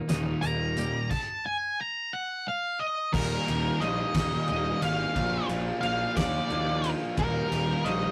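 A rough rehearsal-room recording with saturated grit and moderate reverb captures this short cut from an anthemic, bittersweet quiet-loud alternative rock piece in Eb major, moving slowly in 6/8 at 59 BPM counted in dotted quarters. A twangy, clean twelve-string electric guitar picks arpeggios only until 1.1 s, while an octave-fuzz lead guitar with a dark tone sits up front and carries a solo through a stop that runs from 1.1 to 3.1 s. In the background, a bright, compressed fuzz guitar and a darker, thick fuzz guitar play riffs over a growly, overdriven picked bass and a loose indie drum kit with a fat snare, punchy kick and dark cymbals in a pumping room, as the chords move between Eb and Bb.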